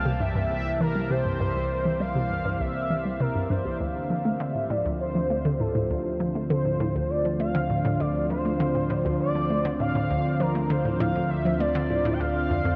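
This excerpt of sequencer-driven ambient space music opens at once on a lush, thick unison pad holding sustained chords, a warm, slowly evolving analog drone in the bass, and a smooth, expressive portamento lead that sits up front with vibrato and a mellow sawtooth-and-triangle tone. At 0.1 seconds a hollow, nasal square-wave pluck enters with a bouncy riff, its fast attack and short decay colored by a moving notch, a noise layer, chorus and delay. A filter sweep runs across this synth arpeggio sound through the whole passage. The mood is mysterious and cosmic, moving at 100 BPM in a straight 4/4 in D minor, with the harmony shifting from C7 to Dm7 at 3.8 seconds. A huge, wet reverb with a long tail surrounds the parts, while the lead adds analog chorus and delay and the pad and drone each carry chorus.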